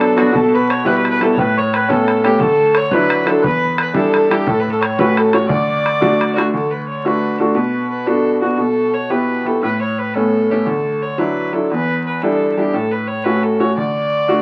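Lively and bright, this Celtic folk jig in D major moves in a straight 6/8 at 116 BPM (dotted quarters), cut from a longer piece. A bowed fiddle with a gut-string, reedy tone carries the melody up front, while a brilliant, worn baby grand piano sits equally forward with intimate, audible action noise, laying down the accompaniment through the full 14.4 seconds. Behind them, a woody, picked mandolin with double strings and a mellow, round accordion trace a second line in the background, both dropping away at 6.3 seconds, and a damped, tight bodhran, close and dry, keeps the beat until 6.5 seconds. The repeated phrase then leaves fiddle and piano alone, opening on Bm and cycling through Em/B, Aadd9, Dadd9, Em7 and A6 before settling on D. A moderate club reverb and the crackle of a very old 78 rpm record give the whole a faded, antique character.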